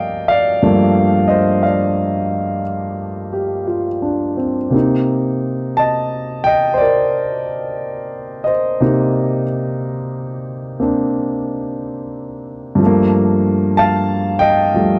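A grand piano sits up front in this late-night, moody solo jazz piece, its intimate, natural tone carrying a long sustain and the audible noise of its action. It plays alone for the full 15 seconds, ranging from G2 up to A5. The feel is loose and rubato, with a swung lilt in a slow 4/4. The harmony moves from Gm9 to Cm9 at 4.7 seconds and returns to Gm9 at 12.8 seconds. A moderate studio reverb and a dark, warm production give the recording an intimate, close atmosphere, and it is cut from a longer performance.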